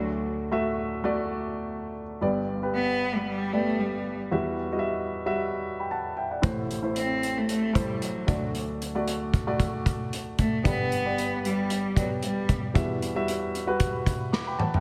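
A lightly swung 4/4 groove at 114 BPM carries this uplifting piano-driven pop excerpt in G major. A natural-sounding baby grand plays the accompaniment from the start with a slapback echo, and a clear, bowed solo cello with vibrato enters at 2.8 seconds to carry a smooth melody, also touched by slapback. An acoustic drum kit with a dark, rolled-off top, tight kick and medium-tuned snare joins at 6.4 seconds and closes with a fill at 14.3 seconds, all set in a big arena-like space with a moderate scoring-stage reverb.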